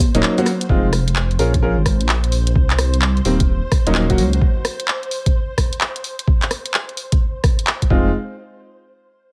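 A dry, up-front mix carries this bouncy, soulful two-step UK garage excerpt at 129 BPM in F minor, with a 64% 16th-note swing. A gritty, thumpy, pitched-down sampler kick and a layered electronic kit of congas, handclaps, hi-hat, rim click and shaker drive it, while a silky vintage string machine holds soft sustained chords through ensemble chorus and sidechain pumping. A boxy grand piano stabs through a digital delay and a deep, rumbling detuned saw bass pumps beneath the Ebm7, Fm7, Bbm7 and Cm changes; both drop out at about 4.4 seconds and return briefly at 7.9 seconds.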